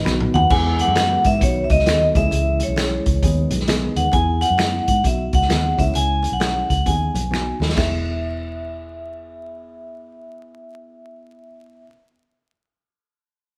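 Uptempo 1960s-style soul in E major at 132 BPM with a swung 4/4 feel, this uplifting short excerpt sets a vibraphone melody, struck with hard mallets and ringing with a slow motor vibrato, up front over a dark, woody upright piano that opens with a brief fill and a round, foam-muted electric bass that carries through to the end. A punchy vintage drum kit with dark cymbals, low-tuned congas and background finger snaps drive the groove until about 8.0 s, while a very quiet tonewheel organ with slow rotary and key click holds sustained chords only for the first 4.1 s. The band sounds live in a stone room with moderate reverb and a layer of vinyl crackle, and a drum fill at 7.3 s leads into a sparser second section built on piano, bass and vibraphone.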